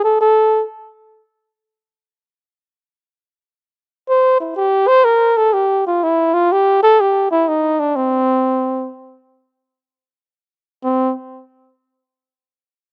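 Recorded outdoors with a touch of reverb, this swinging, sophisticated jazz fragment in free time, tuned to A4 = 437 Hz, features a warm solo flugelhorn, up front and present with a light vibrato, that sounds briefly at the start, returns at 4.1 seconds and moves between C4 and C5 until 11.1 seconds.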